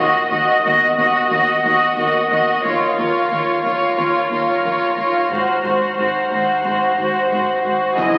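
A straight 4/4 pulse at 90 BPM underpins this ominous, eerie stretch of suspense film score, cut from a longer piece and moving from E-flat minor to A-flat seven at 5.3 seconds. Muted violins, played con sordino with vibrato, carry a veiled, lush second line up front, while muted cellos and double basses sit in the background, and a very quiet sine sub bass holds a deep, full drone beneath. A vibraphone struck with soft mallets, motor off, adds a metallic, ringing shimmer from a boxy small room, and at 2.6 seconds a high, close violin texture joins in the background. At 8.0 seconds a huge, bright impact lands as the vibraphone stops, and a brief muted violin melody enters with a smooth-topped viola accompaniment. The whole sound is bathed in a concert hall reverb and aged like a very old 78 rpm record, with vinyl crackle and lossy compression artefacts.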